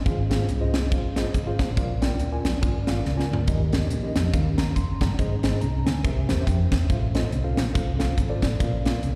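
Uptempo gospel at 141 BPM in 4/4 with a swung eighth-note feel, this soulful, reverent excerpt cut from a longer piece moves through chords from Fm/Ab and Bb to Eb, Ab, C7 and F/A. A mellow tine electric piano with slapback echo carries the accompaniment over a dark, round hollow-body fingered bass. A crisp, up-front fusion kit with a high-tuned snare and punchy kick plays a drum fill at 3.1 seconds, all heard as a live gig through the venue's PA with recital hall reverb.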